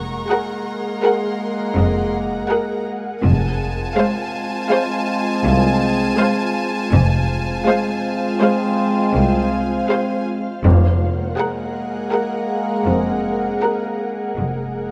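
This cinematic suspense film score moves at 81 BPM in a straight 5/4, its ominous, mysterious mood rooted in F phrygian and cut from a longer piece. Warm symphonic cello and double bass sections hold the low foundation with soft, pure, sul tasto bowing, while a mellow French horn section sits up front with sustained chords and an ethereal, airy pad floats above through ensemble chorus and built-in reverb. Two symphonic violin lines carry a floating melody and a second line from 0.3 s, supported by a dark, woody viola section with lush vibrato, and an intimate chamber violin section adds high texture until 10.2 s. A felt-muted upright piano, soft and boxy, murmurs very quietly underneath. The harmony shifts between Gbadd9/F and Fm, and when Gbadd9/F returns at 10.6 s, timpani enter briefly on F2, articulate under hard mallets on calf heads, all set in a moderate scoring stage reverb.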